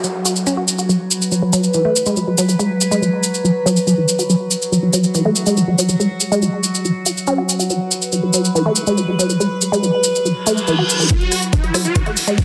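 Psychedelic trance at 141 BPM in a straight 4/4, driving and intense, cut from a longer piece over an F#5 chord. An evolving wavetable pad holds sustained, morphing chords up front with phaser, built-in reverb and sidechain pumping, and a filter sweep runs across it until 11.1 seconds. Alongside it a woody, wave-folded pluck plays a dark, warbling riff with chorus and digital delay, while a grainy, mellow cabasa ticks along in a small room. A downlifter opens the clip, a reverse cymbal swells from 10.4 seconds, and a riser follows from 11.1 seconds. At 11.1 seconds the build-up arrives: an aggressive, swarming rave lead with detuned unison, chorus, phaser, cassette tape and dub echo sketches a short melody, joined by an overdriven, knocking kick and a drum and bass kit of bright hats and rim clicks. The master is dense and heavily limited, set in a moderate digital room reverb.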